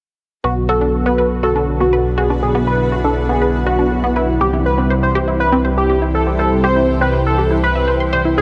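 A straight, steady 4/4 feel carries this dramatic, melancholic techno passage, cut from a longer piece, with a dark detuned saw bass rumbling and beating underneath from 0.4 seconds. Over it, a juicy, resonant polysynth carries the melody through a filter sweep, thickened with chorus and delay, while a clear studio violin section shadows it in the background on a second line, its biting, intense bowing softened by a low-pass filter, dub echo and its own filter sweep. A warm analog pad sustains the chords, moving from B minor to C, and an edgy sync-sweep polysynth with a nasal, bright tone punctuates them with ensemble-chorused stabs. A lush, punchy unison pluck spins arpeggios that scatter through dub echo, and from 1.6 seconds a cloudy, evolving granular pad drifts in. The whole passage sits in a huge ambient reverb with a long, five-second tail, giving it a vast, brooding atmosphere.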